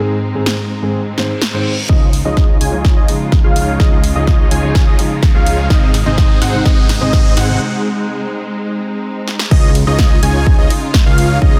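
Festival progressive house at 126 BPM in Db major, this uplifting, anthemic excerpt opens on a dark, mellow concert grand piano and a rich, bowed string section sitting close in the background, both pumping with sidechain, the piano trailing delay and the strings low-pass filtered. A big-room dance kit with a punchy snare and high-passed hats and cymbals arrives at 0.5 s, and a reverse cymbal leads into the build-up at 1.9 s, where the punchy, up-front electronic kick, a fat, saturated analog bass, huge detuned supersaw chords with subtle chorus and a cassette-tape tint, and a thick, warbling unison lead playing arpeggios all enter. Through the build, filter sweeps move across the supersaws, lead and strings while drum fills and a background riser push forward over chords moving from Dbadd9 to Ab. The piano drops out at 7.6 s for a brief break before the drop lands at 9.5 s back on Dbadd9, led by the bright supersaw riff and the vintage, vibrato-laden lead. 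The mix is dense and heavily limited with a light reverb.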